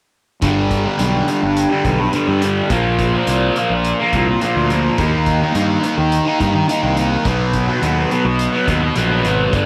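At 0.4 seconds a bright, double-tracked fuzz guitar riff enters up front, its distortion colored by phaser, over a dark, round fingered bass with overdriven grit and a distant, roomy soft-mallet kit built on hi-hat and a punchy kick. This hypnotic, trippy psychedelic rock excerpt moves at 105 BPM in a straight 4/4, passing through G, Bbsus2, Eb and B. A small room reverb surrounds the parts until all three stop together at 9.7 seconds.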